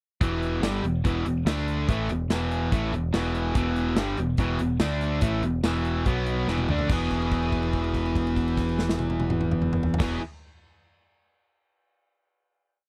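Two bright, overdriven electric guitars, one up front, launch a swaggering, driving classic rock power-chord riff in E major at 144 BPM, doubled by a growling, overdriven picked bass on simple roots and fifths and pushed by a big acoustic rock drum kit with a punchy kick, tambourine and a 60s soul groove, until a drum fill at 6.5 seconds leads into a held final E chord from 6.9 seconds, all captured in a dry, close 1970s-style studio sound.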